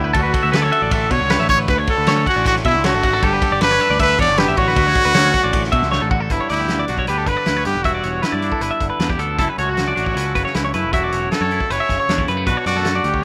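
A straight 4/4 pulse at 156 BPM drives this bright, wistful cut of math rock and midwest emo, taken from a longer piece. A loose indie drum kit comes in at 0.1 seconds with a punchy kick, fat snare, hi-hat and dark ride cymbal, its saturated, gritty sound rolled off at the top, and a fill from 5.9 to 6.3 seconds carries the tune into its second section. Up front, a solo trumpet carries the melody with light vibrato, scooped notes and a close-miked, pop-style snap. Beneath it, a clean twelve-string electric guitar spins compressed arpeggios bathed in spring reverb, while a twangy electric guitar fills in accompaniment further back. An overdriven picked bass growls underneath, and the chords move from Dmaj9 and G to G6, F#m7 and Bm7. The whole thing sits in a rough home demo mix with studio reverb.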